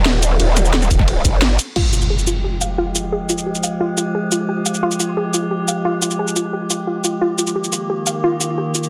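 A growling, wobbling bass with a formant-filtered, saturated edge opens this dark, futuristic excerpt of technical drum and bass at 176 BPM in F minor, driving the drop from 0.0 seconds with chorus, overdrive and sidechain pumping before it stops at 1.6 seconds. The drum kit runs throughout, its cracking, up-front snare joined by cabasa, hi-hat, ride and crash, while an overdriven, knocking electronic kick appears only briefly around the drop. At 1.8 seconds an electronic impact hits as a soft, round pluck begins arpeggios with chorus, tape echo and a filter sweep across the rest of the clip. From 2.4 seconds an eerie, nasal drone with a metallic, inharmonic FM character fades in slowly and sustains chords over an Fmadd9 harmony, pumping against the beat before the chords return to Eb at 7.2 seconds. A moderate plate reverb surrounds the parts, and the master is dense and heavily limited.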